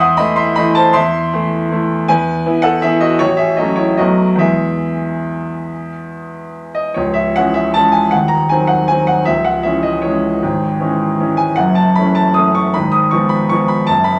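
A classical piano waltz in 3/4, this elegant, sparkling excerpt is cut from a longer piece and moves with a rubato feel at a tempo that ranges from 134 to 168 BPM. A bright grand piano plays solo throughout, its brilliant, open tone sitting up front with a long sustain as it ranges from C#1 up to D#6. The opening passage settles in E major, drifting from an Am/E colour through F#m/A and B7 back home to E. At 7.0 seconds the music turns to C# minor for a new section, where diminished chords such as Cdim/Eb and Fdim/Ab shade the harmony around C#m and F#m7. A wet studio reverb with a short 0.6-second tail gives the instrument a sense of room.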